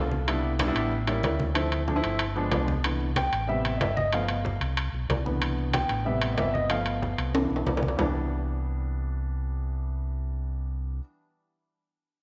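A woody, long-sustaining upright piano and a dark, round electric bass open this sunny, lively Afro-Cuban jazz fragment, joined almost at once by ringing metal-shell timbales up front and low-tuned, thick-skinned congas set in the background; the piano takes a solo from 2.8 seconds, a drum fill arrives at 7.3 seconds, and after the percussion stops at 8.1 seconds the piano and bass carry on through an echo-chamber reverb with a small-room glow.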